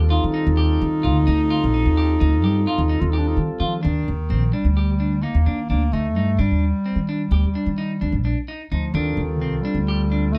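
Driving and intricate, this progressive instrumental excerpt runs in a straight 11/8 at 258 eighth-note beats per minute, in Eb lydian, holding on Ebmaj7 before moving to Fadd9 at 9.0 seconds. A woody, growly pizzicato upright bass sits up front beside a smooth, classical-style bass clarinet carrying the solo melody, while a bright, twangy clean electric guitar picks arpeggios. A soft, flute-like tonewheel organ with key click and slow rotary speaker plays until 3.8 seconds and returns at 8.9 seconds, all in a dark production with light reverb.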